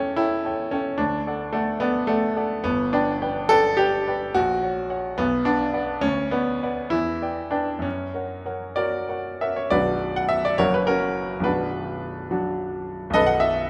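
In a rubato 6/8 lilt of roughly 62-74 BPM counted in dotted quarters, this bittersweet, passionate romantic character piece in B minor is carried by a solo baby grand piano, clear and natural with short sustain and set up front in a moderate recital hall reverb, ranging from B0 to G5 as it moves through a first section before turning at 9.7 s to a second passage that settles from Bm toward a closing B7 at 13.1 s, an excerpt cut from a longer piece.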